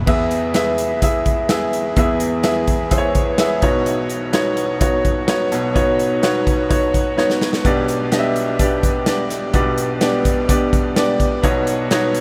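A bright, woody upright piano carries the accompaniment in this anthemic, hopeful piano-driven pop excerpt, with chords moving from E through Badd9 and G/B in a steady straight 4/4, backed by a punchy, up-front studio drum kit of kick, snare, hi-hat and crash that plays a fill at 7.2 seconds, all set in a dreamy mix soaked in a huge ambient reverb.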